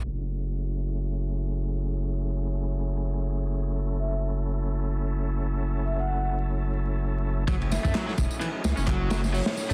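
Dense, heavily limited and dusted with vinyl crackle in a small room, this raw, funky breakbeat excerpt at 129 BPM in F# minor, swung at 56% on 16ths, opens on a percussive tonewheel organ holding an F#m9 chord through overdrive, fast rotary speaker, sidechain pumping and a filter sweep over a deep, thick saturated sub bass, adds a mellow soft-mallet vibraphone melody with small speaker sound and digital delay at 4.0 seconds, then drops at 7.5 seconds into a gritty, crunchy breakbeat drum kit with electronic tambourine and handclaps alongside a bright, picked overdriven electric guitar riff.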